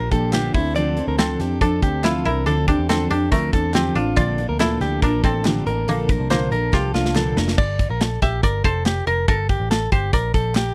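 Bright and nostalgic, this short cut of jangly indie pop moves at 141 BPM in a straight 4/4, with a mellow, woody koto carrying the melody through a tape echo over picked steel-string acoustic guitar, direct-recorded clean electric guitar arpeggios that also pass through tape echo, and a round, foam-muted vintage electric bass. A punchy, up-front modern drum kit and very quiet, crisp group handclaps drive the groove over chords moving from Gm7 to Dm7 and Bbmaj7. A drum fill at 6.7 seconds leads into a new section on Gm at 7.6 seconds, where the full-bodied acoustic guitar drops out, all captured in a dry, close 1970s-style studio sound.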